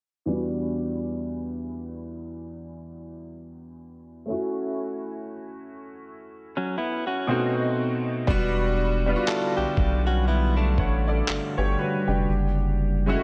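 A clear, intimate baby grand piano with audible action noise and an analog chorus carries this late-night, moody contemporary R&B excerpt in E dorian, playing accompaniment from 0.3 seconds at a slow 60 BPM with a 16th-note swing, moving through Em9, F#m7 and B7b9 under a filter sweep. A clean, direct-recorded electric guitar adds picked arpeggios with spring reverb and delay from 6.6 seconds. At 8.3 seconds a thick, saturated sub bass and a dusty, gritty sampler-style kit of thumpy kick and handclaps arrive, and a dark sawtooth pad with sidechain pumping sits in the background from 9.4 seconds, all in a lightly reverberant, low-pass-filtered mix.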